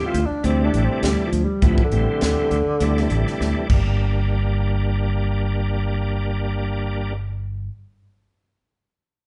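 Electric jazz fusion in G minor at 101 BPM, this short, funky and driving fragment cut from a longer piece moves in a straight 4/4 over a D9sus4 chord that resolves to G minor at 3.7 seconds. A breathy tenor saxophone takes the solo from the start, its dark, whispered subtone carrying vibrato and scooped notes with a soft attack, intimate and up front until it drops out at 3.6 seconds. Behind it, a bright tonewheel organ shouts full chords through a slow rotary speaker, light overdrive and chorus vibrato, playing until 7.1 seconds. A modern fingered electric bass, growly and direct, holds the low end through 7.7 seconds. A crisp fusion drum kit with a punchy kick, high-tuned snare, hi-hat and dark crash cymbals plays a fill from 3.4 seconds before it stops, leaving organ and bass into the next section. The band sounds live in one large studio room, with a moderate reverb and a rounded top end.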